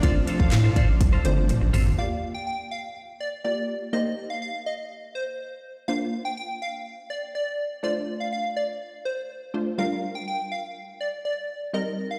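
This bittersweet, driving dance-pop excerpt in G minor at 123 BPM opens on a drop: an up-front house kit with a punchy kick, cracking snare and metallic hats, a deep saturated sine sub bass, huge sidechain-pumped supersaw chords in the background, and a twangy twelve-string electric guitar riff with analog chorus, with a drum fill from 1.0 seconds. By 2.0 seconds the kit, bass, chords and guitar have stopped, leaving a catchy, bright square-wave lead with a filter sweep and delay over a pumping, wave-folded unison pluck accompaniment. The two parts move through Gm7, Eb6, Bbadd9 and Dm7/A under a moderate hall reverb, heard as if over a big sound system in a bare stone room.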